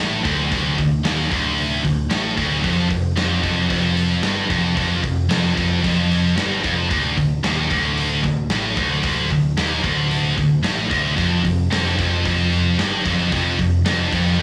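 A straight 4/4 pulse at 112 BPM drives this dark, epic heavy metal piece in D minor, where a scooped, double-tracked high-gain guitar riff sits up front with bright distortion over a growly, punchy overdriven picked bass and a big acoustic rock kit with a tight kick, medium-tuned snare and rolled-off top, the blown-out, overdriven recording carrying small room ambience and light reverb as the harmony shifts between D5 and Fsus2.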